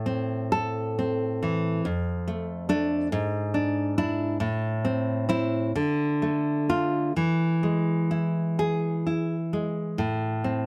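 A fingerpicked nylon-string guitar plays alone and up front in this brief, wistful and melancholic romantic classical excerpt, its deep, warm tone moving in a rubato 6/8 through harmonies in A minor that settle back home at 10.0 seconds, caught by close, detailed microphones in a dry room where finger squeaks can be heard.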